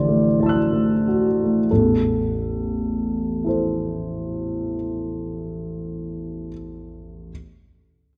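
A worn, warbling cassette-tape quality colors this short fragment of a longer piece, its pitch drifting while a moderate reverb, like that of a scoring stage, gives the sound a soft halo. Within that haze sits a solo grand piano, warm and present, placed up front with long, lingering sustain and spanning from A1 up to F#6. This is impressionist classical music in 6/8, played with free rubato that gives it a hazy, mysterious mood. The opening passage slows as it rests on a D9 chord over an A bass, then at 1.7 seconds the music moves into a new passage settling on A minor. The piano plays alone throughout, ending at 7.3 seconds.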